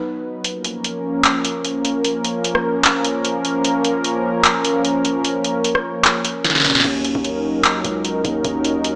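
Heard through a small-speaker sound with moderate plate reverb, this brooding, menacing trap excerpt at 150 BPM in a half-time 4/4 feel sits in Bb phrygian, where a smooth, detuned sawtooth pad with chorus holds up-front sustained chords over Bbm and then Ebm7. A deep sine 808-style bass sounds at the start and returns at 6.8 seconds, and a booming, tape-warm analog drum machine enters at 0.4 seconds with crisp snare, metallic hi-hats, handclaps, rim clicks and a crash, a fill arriving at 6.4 seconds before its kick joins at 6.8 seconds.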